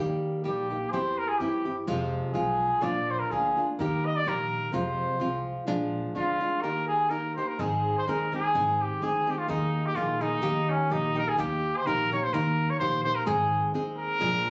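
A warm, vintage-toned trumpet stands out front as the soloist, carrying the melody in a classical style from 0.5 seconds in this festive, proud mariachi cut taken from a longer piece. Beneath it, a fingerpicked nylon-string guitar sits up front with an acoustic, classical accompaniment, while a pizzicato upright bass on steel strings adds a woody, thumpy low end. The tempo moves at 126 BPM in 2/4 with a light swing on the eighth notes, starting in Eb major and shifting to Ab major at 7.6 seconds as the second section begins. Chords run from Eb through Fm and Bb7 before settling onto Ab, with a brief Ebsus4 passing back to Eb later on. The sound is that of a phone capturing a live room, with club-like reverb and a dull top end that gives the whole performance an intimate, unpolished character.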